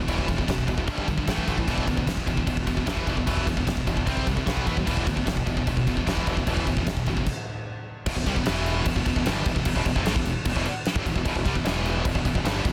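Heavy metal in E minor at 150 BPM, relentless and dark, with two bright, picked distorted electric guitars (one tight, one high-gain and set further back) driving power-chord riffs alongside a growling, overdriven fingered bass and a big acoustic drum kit up front with a punchy kick, fat snare and bright crash cymbals. The band halts for a stop from 7.3 to 8.1 seconds before crashing back in on E minor for a new section. The mix is dry and dense, with a heavily limited modern master, and the clip is cut from a longer piece.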